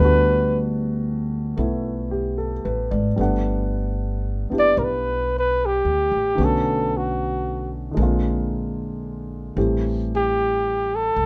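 Swung eighths in an unhurried 4/4 carry this intimate, tender jazz ballad, cut from a longer piece, where a mellow flugelhorn with light vibrato sings the melody up front and takes a featured solo in the opening 3.2 seconds. Beneath it, an upright piano with audible action noise and a natural, woody tone accompanies closely, while a dark, pizzicato upright bass on steel strings anchors the low end. Light reverb softens the close, present sound as the harmony drifts from Gmaj9 through Bm7 and Bb9 to Am7.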